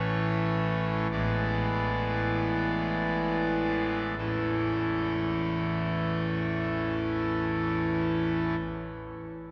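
Heard from further back in a cathedral with a long, wet reverb, this serene and majestic classical chorale for pipe organ in A major unfolds in free time, its bright, brassy trumpet stop in a baroque voicing playing solo from A1 to D5, slowing over the opening phrase as the harmony moves from A to E7/A at 1.1 seconds and back to A at 4.2 seconds before the organ stops at 8.6 seconds.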